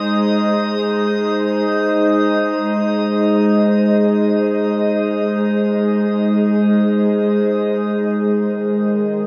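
Warm and peaceful, this short ambient passage in Ab major floats in free time, cut from a longer piece. A warbling, nostalgic pad with a detuned, lo-fi character sits up front, holding sustained chords through chorus and shimmer reverb, its slow attack and long release giving each chord a mellow bloom. Beneath it, a very quiet organ-like drone hums steadily across the full 9.3 seconds. A glassy texture of drifting overtones hovers above, also treated with chorus and shimmer reverb, before it stops at 7.8 seconds, where the harmony shifts from Ab to Abadd9. The whole recording is bathed in a lush hall reverb, with a dark production that keeps the sound warm and enveloping.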